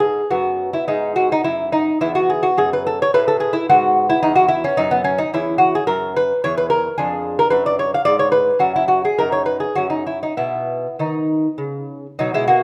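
A serene, radiant baroque-style dance in classical style, this excerpt from a longer piece moves in a rubato 3/4 at roughly 97-111 BPM, starting in E major and shifting toward B major from 5.3 s. A solo lute plays throughout, from 0.0 to 12.6 s, ranging from E2 to F5. Its bright, delicate fingerpicked nylon strings are doubled, some at the octave, and sit up front in a moderate recital hall reverb.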